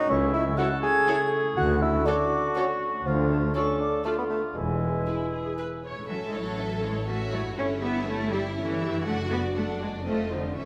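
Quirky and playful, this cinematic passage in A major moves in a straight 3/4 at 121 BPM, tuned slightly low to A4 = 438 Hz, and is cut from a longer piece. A violin section carries the melody with vibrato and portamento, sitting in the background. It is supported by a sul tasto chamber violin line, a lush viola section and a distant cello section. A rich, focused double bass section and a quiet tuba anchor the low end. At the opening, an airy flute and a roomy oboe add second lines, a mellow bassoon fills in accompaniment, and a dark French horn section holds sustained chords, with these winds and brass gone by 5.8 s. The strings continue alongside a thumb-plucked concert harp, present from the very start, whose ringing arpeggios run to the close at 10.7 s. A wet concert hall reverb surrounds the ensemble, and the harmony moves through chords such as Dmaj7, Dm and A7/G before landing on a surprising F7.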